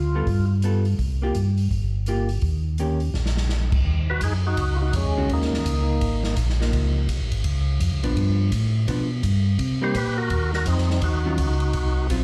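Heard as a live club gig through the venue's PA, this greasy, swinging soul jazz organ trio cut moves at 167 BPM in 4/4, settling into Ab mixolydian at 3.9 s just after a drum fill at 3.1 s. A mellow, round tonewheel organ holds the bass up front with a slow rotary speaker, vibrato and key click, while a second, percussive tonewheel organ with second-harmonic percussion carries the melody in short phrases, briefly at the very start and again from 4.1 s, through a slow rotary speaker and slapback echo. A dark, clean hollow-body electric jazz guitar picks the accompaniment with its own slapback, and an airy, polished big-band kit swings on ride, hi-hat, punchy kick, snare and crash.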